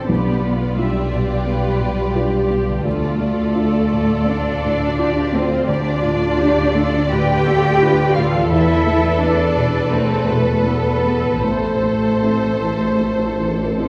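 A cinematic piece of longing and bittersweet feeling, it moves at 85 BPM in 4/4 with a rubato, uneven pulse, drifting from Bdim through Dm and Esus4 to Am. Con sordino violins carry a veiled melody over a second violin line, with a rich viola section, dark cellos and a lush double bass section bowing with vibrato beneath, while a felt-muted upright piano adds intimate, mellow accompaniment and a very quiet concert harp rings out thumb-plucked arpeggios. A wet scoring-stage reverb places the ensemble further back in the room.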